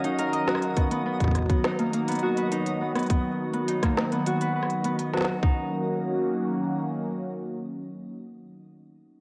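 A glitchy, cerebral IDM piece in Eb minor, moving at 103 BPM in a straight 4/4 and cut from a longer work. A swirling, detuned sawtooth analog pad holds slow-attack chords up front, colored by phaser and chorus as the harmony shifts from Ebm7 to Bmaj7. A fingerpicked Celtic harp rings out arpeggios alongside it, its acoustic tone softened by a low-pass filter and trailed by tape echo. The organic electronic kit brings a woody snare, crisp hats and rim clicks, and a tight electronic kick joins at 0.8 s; both have a tape-warm character from being re-recorded in a small room, with the kick sitting up front. In the background, a twinkling FM granular texture adds an octave-up shimmer on a single high note. The beat falls away by 5.5 s, leaving the pad and harp to sustain inside a lush hall reverb, all of it carried on worn cassette tape with a warbly pitch drift.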